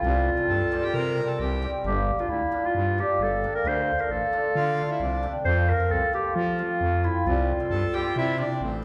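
A breathy clarinet opens this bittersweet, festive klezmer fragment at 133 BPM in a straight 4/4, carrying the melody with a light vibrato and a subtone, sitting up front in a vintage, jazz-style solo voice. Beneath it from the start, a bright acoustic cimbalom supplies hammered, shimmering accompaniment, while a growling FM bass, thick and sustained with a fast attack, also sits up front and anchors the low end. A reedy accordion adds a second line, stepping in briefly at 0.5 seconds, dropping out at 1.7 seconds, and returning at 4.6 seconds to play on to the close with a full, dry-tuned sound. The harmony moves through C, G minor, D minor and F before landing back on C. A recital-hall reverb gives the ensemble the resonant air of a church or concert hall, and the passage is cut from a longer piece.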